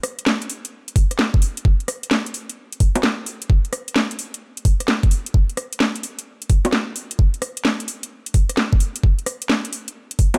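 UK garage drum excerpt with a skippy, moody feel, its sixteenths swung at 66%. A layered garage kit of bongos, metallic hi-hats, rim clicks and a cracking snare opens alone, and a knocking electronic kick enters at 1.0 seconds, both parts sitting up front with a tape-warm, produced character. The sound is dry, with little reverb.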